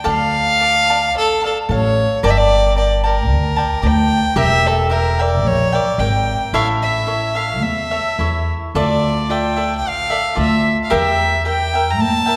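Long, wet concert-hall reverb surrounds this short passage of passionate, dramatic mariachi-style Mexican folk, cut from a longer piece and running about 12.4 seconds. It moves in 4/4 at around 111 BPM with a rubato feel, set in D harmonic minor. A single bowed violin sits close and up front, carrying the melody with a rich, reedy gut-string tone in a period style. A bright, crisp picked cavaquinho supplies the accompaniment. An upright bass, also up front, plays pizzicato on gut strings with a woody, dark, thumpy sound. The harmony turns through Dm, Gmadd9, Edim, A, Dmadd9 and back to Edim, giving the phrase a tense, yearning pull.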